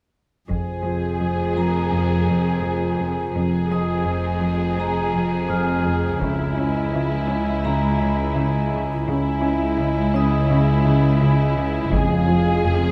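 Close, detailed microphones and light reverb give this suspenseful film-score fragment an intimate, finely etched sound, cut from a longer piece. At 84 BPM in 4/4 and F minor, it moves from F minor to D-flat minor with an added ninth and back, with a mysterious, ominous mood. A con sordino violin section carries a veiled, lush melody with a soft attack. A glassy, ethereal glass harmonica holds sustained chords. Beneath them, a distant chamber cello section plays a very quiet riff, and muted double basses and symphonic cellos form a dark bass in the background. A tense, warbling, sawtooth-edged drone with its own reverb enters at 1.4 seconds, a bright, metallic vibraphone played with hard mallets adds a ringing texture from 1.6 seconds, and a heavy-sticked taiko ensemble in a small room strikes at the openings of the chord changes, including 6.2 seconds.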